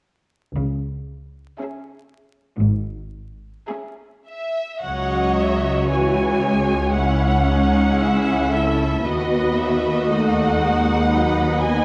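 Melancholic and solemn, this slow romantic movement for string orchestra moves at 58 BPM in 4/4 with a rubato feel, set in C# minor. Bowed cellos and double basses open the fragment at 0.6 s on a C# minor chord, the cellos intense with vibrato and the basses smooth and even beneath them. At 1.6 s the rest of the orchestra joins: a dark, expressive first violin section carries the high, distant melody, a focused second violin section traces a line beneath it, and a lush viola section fills the middle as accompaniment. The passage opens into its second part at 4.8 s, and the harmony later shifts to B over D# at 9.1 s. A moderate scoring-stage reverb of 1.4 s surrounds the ensemble, and a layer of vinyl crackle gives the sound an aged, worn patina.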